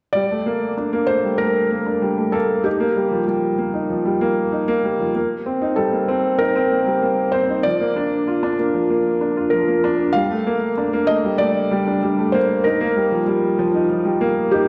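From the first moment, a felt-muted upright piano carries a soft, mellow melody with audible action noise over an open, long-sustaining baby grand riff that sits up front with tape echo, both pianos playing through this brief electronica excerpt as the chords move from Gmadd9 through Ebadd9, Cm7 and Bb, set in a dark, warm production with a wet recital-hall reverb that lends a moving, intimate mood.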